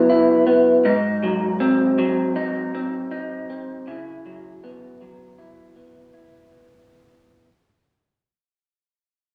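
Dreamy and sunny, this short indie pop fragment, cut from a longer piece, has a gently swung lilt and fades out from the start until 6.9 seconds. A single picked electric guitar through a small old amp carries the accompaniment up front, its slightly broken-up, lo-fi tone touched with subtle chorus and vibrato as it moves from C#m7 to G#7 and back. Worn cassette tape adds a warbling pitch drift, and a damp small-room ambience surrounds the guitar.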